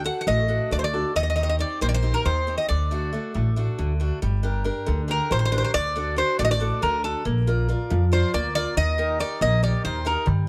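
Set in a straight 7/8 at 276 BPM counted in eighths and speeding up throughout, this moody, brooding Greek folk fragment for bouzouki band sits in D phrygian dominant, moving through chords such as D, Eb6, Gm and Bb. A bright, metallic bouzouki carries the melody up front with its doubled, partly octave-doubled strings, while a picked archtop guitar with old strings gives boxy, woody accompaniment and a pizzicato upright bass on steel strings stands forward in the low end. The second section begins at 4.2 seconds, and a crisp, high metal-shelled darbuka appears only briefly at 10.3 seconds, all captured by close, detailed microphones in a dry room.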